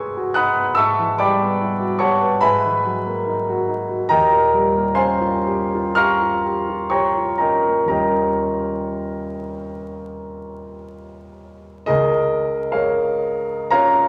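Serene and luminous, this brief impressionist solo piano excerpt unfolds with rubato freedom on a concert grand whose open, up-front tone and deep bass reach from Db2 to G#6, drifting through lush extended chords such as G#m7, Bmaj7/G# and Eb9 before settling on Db6 at 11.9 seconds, all bathed in a wet recital hall reverb and a vinyl crackle.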